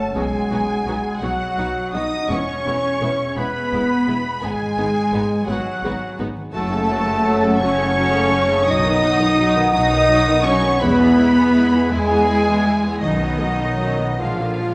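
Cinematic, sorrowful and longing, this rubato 6/8 passage at 56 BPM sets a veiled, con sordino violin section melody over a second violin line, distant violas, very quiet cellos and rich double basses, with a pure, close flute section and a dark solo clarinet carrying second lines, a mellow, roomy French horn section sustaining chords, and a bright, ringing concert harp arpeggiating in the background, all bathed in a wet scoring-stage reverb across chords moving from B through E, G#m and F#m to Badd9 and an A#7 at 14.2 seconds in this cut from a longer piece.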